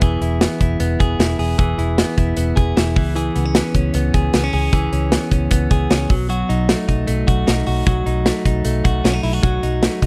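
A dry, close studio sound in the 1970s style frames this breezy, nostalgic jangly indie pop cut at 153 BPM in E major, where a bright, twangy, compressed clean electric guitar picks up-front arpeggios over a dark, round, foam-muted fingered bass and an up-front rock drum kit of punchy kick, snare and hi-hat, moving from E to C#m7 at 3.0 seconds and B7 at 6.1 seconds.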